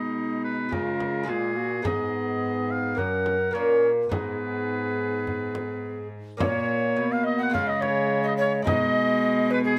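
A straight 4/4 pulse at 106 BPM carries this solemn, rustic renaissance-style consort dance in G# dorian, tuned to A4 = 444 Hz, with a frame drum of hard hands, close and dry, sounding from 0.7 to 8.9 seconds. An up-front, clear oboe leads the melody over a mellow, hollow tenor recorder whose tongued chiff and airy straight tone shape the second line, while a dark trombone with light vibrato and a soft attack joins a bright, delicate fingerpicked lute with double strings in the accompaniment. A distant, nasal cello with gut-string tone bows the bass beneath it all in light reverb, captured by close, detailed microphones in this cut from a longer piece.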